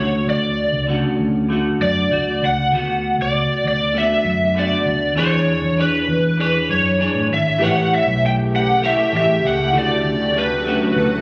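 An up-front, overdriven slide guitar played with fingerpicks carries the melody in this hazy, sunny indie pop clip at 98 BPM in D major, its bright tone colored by analog chorus and tape echo. Beneath it, a clean, picked semi-hollow electric guitar with chorus and warbly pitch drift and a round, punchy, foam-muted fingered bass move through Dmaj7, Bm7, E13 and A7. A dark, woody, slightly detuned upright piano with audible action noise slips in at 7.6 s in the background, followed at 8.2 s by an ethereal, granular pad with octave-up shimmer and a slow attack, all captured on a phone in the room with club reverb.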